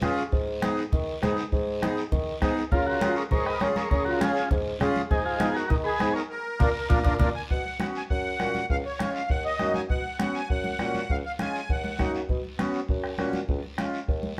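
Passionate and fiery, this cumbia excerpt at 200 BPM sets a reedy accordion and a mellow, punchy bassoon bass over a soft-beaten bombo, hard-hand congas and a raspy guiro, before a buzzy, overdriven combo organ with heavy vibrato takes the melody up front from 2.7 to 7.3 seconds alongside a shimmering musette accordion line; a drum fill and band accent at 6.3 seconds lead into an accordion solo from 7.5 seconds, all heard as a band playing live in a stone room with moderate reverb.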